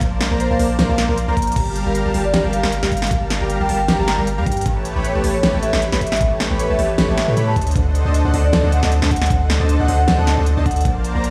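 Opening at once with a huge, thick supersaw riff pumping against a deep, long 808-style bass, a knocking electronic kick and a pop kit of fat snare, crisp hats and crash, this dreamy, emotional future bass fragment in half-time swing brings in a metallic, ringing vibraphone melody with dub echo at 0.4 seconds, all moving through Bbmaj7, Gm7, A7 and D7b9 under light digital ambience.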